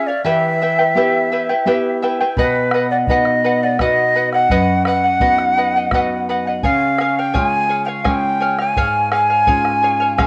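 A breathy, bright wooden quena carries the melody up front, its crisp, chiffy attack and vibrato given extra lift in the highs and a cassette-tape coloring. This wistful, melancholic Andean folk excerpt, cut from a longer piece, moves at 84 BPM in a straight 3/4. Beneath it, a shimmering charango is fingerpicked on its double strings, some of them octave-doubled, sitting up front with the same tape tint. A full-bodied nylon-string guitar, also fingerpicked and taped, fills out the lower register. At 2.4 seconds a deep, dark bombo enters with a small-room sound, as the harmony moves from E minor to B and then C# at 6.6 seconds. The whole home cassette recording is bathed in a wet spring reverb.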